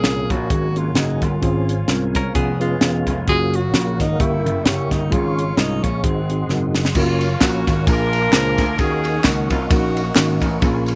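Uptempo gospel with an uplifting, soulful mood and a swung 4/4 feel, cut from a longer piece. A breathy tenor saxophone carries the opening melody with vibrato, subtone and scooped notes, over a mellow tine electric piano with slapback echo, a soft, flute-like tonewheel organ turning on a slow rotary speaker in the background, and a very quiet brass ensemble holding sustained chords. Driving it are a bright, amped slap bass and a crisp, punchy drum kit with a high-tuned snare and dark cymbals, both up front. A twangy, direct-recorded clean electric guitar slips in a brief second line at 2.2 seconds, and a drum fill closes the first section. At 7.0 seconds a clear, roomy saxophone section takes over the melody with slapback echo, joined by tambourine, tube shaker and group handclaps in the background, as the chords move through Gbmaj7, Bb7 and Ebm7.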